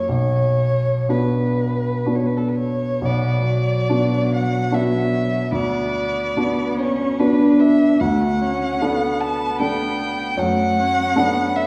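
Serene and lyrical, this short slice of a slow romantic piano trio movement in B minor drifts in 3/4 at a flexible, rubato pace of roughly 59-79 BPM. A smooth, vibrato-laden violin sings the melody up front over clear, polished baby grand accompaniment, and a focused, distant bowed cello joins with a second line at 3.0 seconds. The trio sits a little back in a reverberant recital hall, with harmony moving from B minor toward D major.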